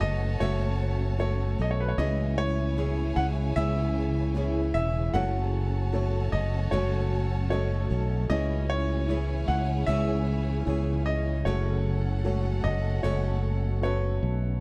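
A dark, lightly reverberant production frames this heartbroken, melancholic pop ballad excerpt, where a brilliant concert grand piano carries the melody over a distant, lush bowed violin section on the second line, a woody upright piano with audible action noise, a blurred, evolving granular cloud pad holding sustained chords, a parlour acoustic guitar picking arpeggios, and a round fretless electric bass sitting up front, over chords that alternate between F#m and C#m.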